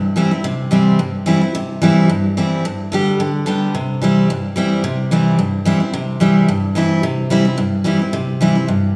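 A picked steel-string dreadnought guitar plays alone from the start, an up-front, virtuosic and joyful bluegrass solo in C major at a brisk 218 BPM in straight 4/4, with finger squeak audible as it moves between C and G chords. Its range spans G2 to G4, and a new section begins at 4.8 seconds. The guitar sits in the wet, lingering reverb of a church or concert hall, in this short passage cut from a longer piece, tuned to A4 = 439 Hz.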